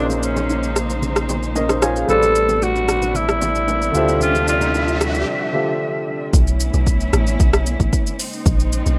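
A raspy, growling alto saxophone with breathy vibrato and a touch of delay carries the melody of this late-night, deep amapiano excerpt until 5.0 seconds, over a natural-sounding grand piano that adds a fill, lush bowed strings, a round analog bass, and soft-handed bongos and congas in the background. An overdriven deep house drum kit with a deep kick, metallic hats, rim click and shaker sits up front throughout, while a background riser builds toward a break at 5.3 seconds. At 6.3 seconds the drop arrives with a dark, percussive log drum bass beneath the sustained strings, all in a rough home demo mix with light reverb.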